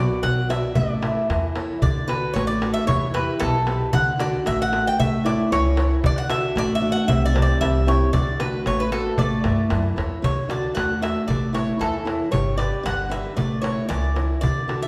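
A warm, metallic Greek bouzouki leads this short Greek folk passage, its picked double strings, some doubled at the octave, carrying the melody up front. A dark, boxy archtop guitar supplies picked accompaniment alongside it, with the occasional finger squeak. A woody, thumpy pizzicato upright bass sits low beneath them, and a crisp metal-shell darbuka enters at 0.1 s, played with hard hands and given a compressed, saturated edge. The mood is hopeful and sunny, moving at 114 BPM in a straight 2/4 in D major. The harmony opens on Bm and A, settles into a phrase built on D, Em, A and C from 1.8 s, and returns to the opening material at 10.2 s, ending on G and A. Everything sits in the lush reverb of a church or concert hall, and the clip is cut from a longer piece.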